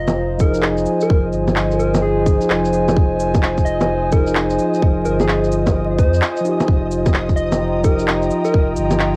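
Vinyl crackle and cassette colour sit over a small, homely room sound in this short, melancholic and ghostly future garage excerpt in F minor, moving at 129 BPM with a 64% swing on the sixteenths. A dark, detuned analog pad holds sustained chords up front, swelling in slowly and breathing with sidechain pumping, while a round sine sub bass with tube saturation anchors the low end and pumps along with it. From 0.4 seconds a mellow tine electric piano adds accompaniment roughened by 12-bit sampler grit and tape echo, and a tight electronic kick drum arrives at the same moment as the most prominent part. Electronic bongos, shaker, cabasa and handclaps fill out the groove with studio reverb and tape colour, and a grainy, flickering granular texture shimmers quietly in the background. Over this, a soft struck FM synth lead sings a gentle, warbling melody with vibrato, chorus and analog delay until 8.7 seconds, as the harmony shifts from Fm7 to Eb/F at 6.7 seconds.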